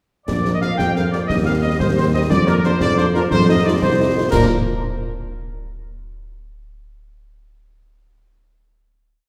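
Festive and spirited, this brief military-style march for wind band moves at 119 BPM in a straight 6/8 in Bb major, with a clear trumpet section carrying the melody up front with light vibrato while a mellow, soft-attacked tuba holds sustained bass on the beats. A warm French horn section sits in the background with after-beat and sustained chords from 0.5 seconds, and concert snare drum, bright clash cymbals and concert bass drum give a marching snare over the bass drum on the beat. The ensemble is heard from further back in a wet scoring-stage reverb, and the piece closes on a final Bb chord at 4.3 seconds.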